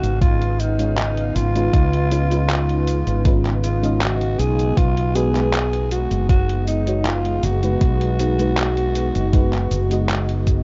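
A slow, straight 4/4 pulse at 79 BPM comes from a detuned 8-bit drum machine of cabasa, handclaps and hi-hat with a small-room character, joined at 0.2 seconds by a thumpy, sampler-style electronic kick drum. This woozy, nostalgic vaporwave passage in B lydian, cut from a longer piece, rests on a round, dark fretless electric bass sitting up front in the low register. A soft string machine holds silky, slow-blooming chords in the background, colored by phaser, ensemble chorus and vintage 12-bit sampler grit, while from 0.8 seconds an FM electric piano layered with a soft pad adds lush, dreamy, detuned tones with analog chorus. Over this, a close-miked alto saxophone carries the melody in a breathy, raspy, growling jazz voice with light vibrato and tape echo. The harmony moves from C#9 to B6 at 4.8 seconds, and the whole recording has a worn, warbling cassette sound with pitch drift, light reverb and a dull top end.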